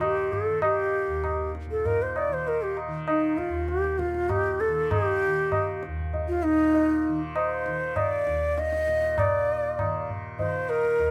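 Indian classical music in the Hindustani tradition, this serene, meditative excerpt moves at 98 BPM in 7/4 and sets raga yaman on Eb, with the three players performing live together in one room under moderate studio reverb. An airy bamboo bansuri carries the melody up front and close-miked, its vibrato and tongued notes ranging from Eb4 to Eb5, over a softly plucked, buzzing, shimmering tanpura drone and a low-tuned tabla with a short ring. All three parts play throughout, and the music passes into a new section at 9.2 seconds before the cut at 11.1 seconds.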